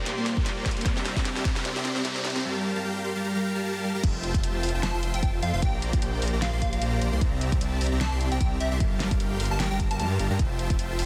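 A huge, compressed supersaw riff drives this playful, bright future bass excerpt in F major at 151 BPM, its pumping sidechain and delay sitting up front over a half-time, swung groove from a pop kit with a fat snare and a punchy layered electronic kick. An ethereal pad and a background riser carry the build-up alongside a drum fill until 2.4 s, then the drop arrives at 4.0 s with a thick, chorused detuned saw bass and a catchy square-wave plucky lead with tape echo entering at 4.8 s. Chords cycle through Bb6, C7, Gm7 and Fmaj7 under light digital ambience and a dense, heavily limited master.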